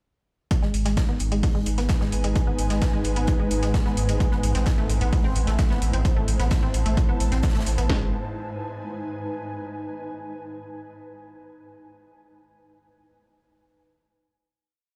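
A dark, hypnotic peak-time techno piece at 130 BPM in G# phrygian opens at 0.5 s with an up-front techno kit's punchy four-on-the-floor kick and cracking snare, metallic programmed hi-hats, and a gated 80s acoustic breakbeat sitting in the background. A squelchy, resonant blip pluck with chorus, overdrive and delay runs a 6-step loop drifting against the bar, while a thick, saturated sub bass rumbles between the kicks, the drone swarms in at 2.1 s, and an ethereal pad brings slowly shifting chords, the sustained parts pumping against the kick. The harmony moves from G#m to Am and back, and the groove stops at 7.9 s, leaving the pad's mellow final chord ringing in a stone room.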